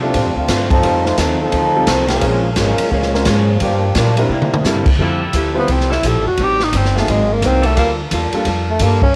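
Swinging at 173 BPM in F major, this joyful, brassy big band jazz excerpt opens with a bright, up-front trombone section taking the solo over a woody, growly pizzicato upright bass, a polished big-band drum kit with a punchy kick and a brief fill, a background baby grand piano and a clean, hollow-body archtop guitar; at 5.0 seconds a tight, vintage saxophone section holds sustained chords in the background, and at 5.6 seconds a breathy, whispered tenor saxophone with vibrato, scooped notes and a cassette tape colour steps forward for an intimate solo, the home cassette recording carrying moderate spring reverb and small room ambience.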